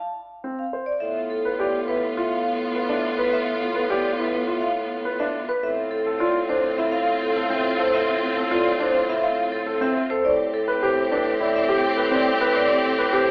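Bright and hypnotic, this short cut from a longer piece of minimalist classical pattern music moves at 104 BPM in a straight 4/4, opening with a metallic, ringing vibraphone melody struck with hard mallets and colored by a medium motor vibrato, joined at 0.4 seconds by arpeggios on a warm baby grand piano. At 1.0 seconds a clear, focused studio string section enters with bowed, up-front sustained chords, while a dark bassoon with light vibrato holds a smooth bass line on A2 beneath the harmony as it moves from G9/A through Dm9/A to Am11. A moderate recital hall reverb surrounds the ensemble, and the whole recording carries an AM radio character.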